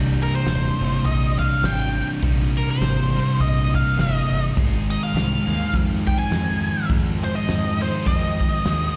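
This short excerpt sounds like a live gig heard through the venue's PA, with recital-hall reverb and small-room ambience around the band. It is brooding, hypnotic stoner and doom metal in C minor, swinging at 103 BPM in 4/4 and moving from Cm to Ab at 4.6 seconds. Two dark, thick fuzz guitars and a bright, double-tracked high-gain guitar sit in the background playing the riff, each with slapback echo. Underneath, a growling fingered electric bass, overdriven and heard both direct and amped, holds the low end. An octave-fuzz lead guitar enters at 0.2 seconds with a shadowy melody coloured by wah and slapback echo. From 0.5 seconds a soft brush drum kit adds a fat snare, punchy kick and crash cymbal, its tone smooth and rolled off at the top.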